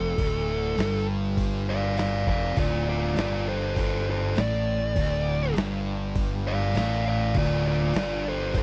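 Stoner and doom metal in D minor at 100 BPM, this hypnotic, brooding excerpt from a longer piece sets an up-front fuzz lead guitar soloing between F4 and F5 over a growly, overdriven fingered electric bass, dark picked fuzz guitars tucked in the background, a very quiet double-tracked sludgy guitar riffing low, and a gritty, tape-warm sampler-style drum kit with thumpy kick, medium-tuned snare, hi-hat and crash entering at 0.2 seconds, all held on a single D minor chord in a dry, close 1970s-style studio sound.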